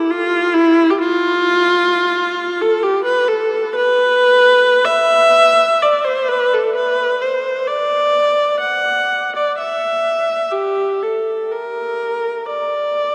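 The rhythm moves in a free rubato, loosely paced at 50-70 BPM within a 4/4 frame, so the pulse breathes rather than marches. This short classical excerpt, cut from a longer piece, features a single bowed viola playing alone for its full 13.1 seconds, with a mournful, lonely mood. The viola sits up front with a rich, focused tone, a smooth top and vibrato, moving between E4 and F#5. Its line unfolds in one continuous section, tuned slightly high to A4 = 441 Hz. A deep cathedral reverb with a 5.5-second decay surrounds the instrument, and the dark, warm production deepens the sense of solitude.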